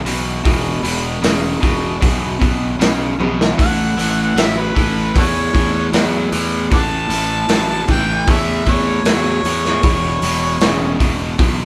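A biting, double-tracked overdriven guitar opens this gritty, driving blues rock and southern rock excerpt with a picked low riff on E5 at 77 BPM, joined at once by a growly fuzz bass and a raw garage drum kit whose saturated, punchy kick and pumping room sound sit up front. After a drum fill ends at 3.6 seconds, the chord moves to A and a clear, overdriven harmonica takes a jazz-style solo with light vibrato, tongue slaps and scooped notes, before the riff returns to E5 at 9.8 seconds. The band plays live together in one room with moderate large-studio reverb.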